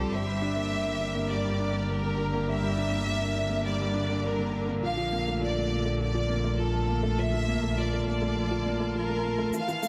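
Piano and strings electronica with a hypnotic, moving feel, where an up-front, smooth studio violin section carries the melody through digital delay over distant, expressive string quartet chords with portamento, a mellow, woody upright piano riff and a lush, bowed double bass section thinned by a high-pass filter, all moving from Gm to Bbmaj7 in light small-room reverb before an overdriven electronic shaker enters at 9.5 seconds in this cut from a longer piece.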